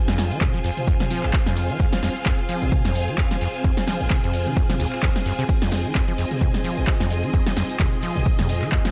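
An acid house excerpt at 130 BPM in F minor, hypnotic and raw, where a squelchy, resonant sawtooth acid bass riff plays alongside a punchy, tape-warm analog kick up front and a drum machine of handclaps, hi-hat, snare and toms re-recorded in a small room, with grainy maracas in the background, while a lush vintage string machine with ensemble chorus and 12-bit grit holds an Fm chord beside a clear, bowed studio string section, both pumping with sidechain compression through 8.9 seconds in a digital ambience.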